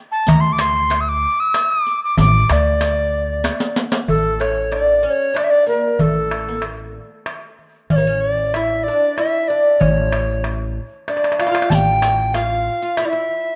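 A lush hall reverb hangs over this rough home-demo mix, a short melancholic, soulful cut from a longer Arabic maqam ensemble piece at 94 BPM in a straight 3/4. An airy, reedy alto recorder sits up front with the melody, its soft, chiffy attack, vibrato and rolled-off highs giving it a mellow wooden voice. Beneath it, a pizzicato upright bass with steel strings supplies a low, woody foundation, while a crisp, small metal-shelled darbuka and a vintage riq with dark, band-limited jingles keep the percussion going. After a drum fill at 3.5 s, the music moves from D maqam bayati to A maqam hijaz at 4.1 s, and a bright, fretless, plectrum-plucked oud with double strings enters with a second line. The riq drops out at that point and returns at 11.7 s, just after another drum fill.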